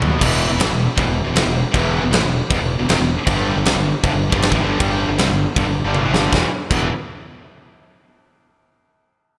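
A bright 1980s-style digital production bathed in plate reverb frames this epic, relentless heavy metal excerpt, where three picked, distorted electric guitars, one of them high-gain and one double-tracked, sit in the background playing a riff over E5 and G5 chords, a round, fuzzy fingered bass growls beneath, and an up-front acoustic drum kit with a fat snare, tight kick, crash and toms booms through gated reverb, with drum fills at 0.0 and 6.0 seconds.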